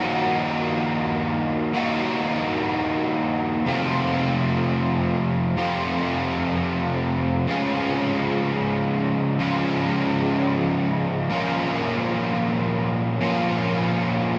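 A crunchy, overdriven electric guitar, picked and double-tracked, sits up front and plays alone through this 14.4-second rock fragment cut from a longer piece, colored by ensemble chorus and analog delay. Its lines move over Ebm, F, Db and Bbm chords, reaching from low to mid register in a wistful, dreamy mood. A huge ambient reverb with a long 8.3-second tail soaks the whole mix, giving it a hazy, floating sound.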